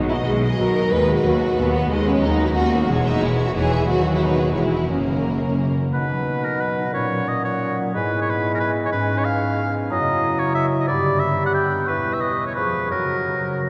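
Classical romantic orchestral music, graceful and cheerful, moves fast at 181 BPM in a rubato 3/4 in B major, opening with lush bowed strings (an expressive, up-front violin section over a softer violin melody in the background, rich violas, smooth vibrato cellos and a focused, distant double bass section) above ringing fingerpicked harp arpeggios that carry through to 13.7 seconds, until the strings stop and at 5.9 seconds a clear oboe, a mellow clarinet, an airy, hollow silver flute and a warm bassoon take over, set in a long, wet cathedral reverb.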